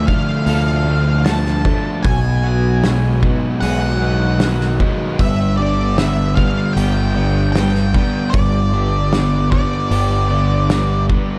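A bright, growling fingered bass sits up front in this blissful, wistful slice of shoegaze and dream pop at 76 BPM, driving a Dm, B6 and G progression over a loose indie kit with a punchy kick, medium-tuned snare and pumping room sound. Above it, a dark octave-fuzz lead guitar sings the melody through distortion and tape echo, while a thick fuzz guitar with analog chorus and an overdriven semi-hollow guitar bathed in reverse reverb churn out riffs in the background. A very quiet, clean electric guitar adds dark arpeggios, and the whole dusky, warm mix carries light reverb and small-room ambience across this brief 11-second cut from a longer piece.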